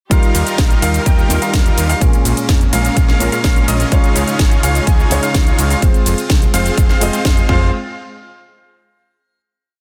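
Festival progressive house in an anthemic, euphoric mood, this short piece is one drop that ends on a final hit at 7.7 seconds: a huge, detuned supersaw lead plays a rhythmic chord riff over a fat analog bass driving in eighth notes, a punchy four-on-the-floor electronic kick sits up front, and an overdriven house kit adds a cracking snare, metallic hi-hats, ride and cabasa, while a soft felt-muted upright piano holds chords with syncopated pushes, a brilliant baby grand with vintage 12-bit grit arpeggiates in the background doubling the chords, and a veiled, con sordino string section sustains a dark pad, the melodic parts pumping with sidechain, the pianos and lead trailing digital delay, all in a dense, heavily limited master.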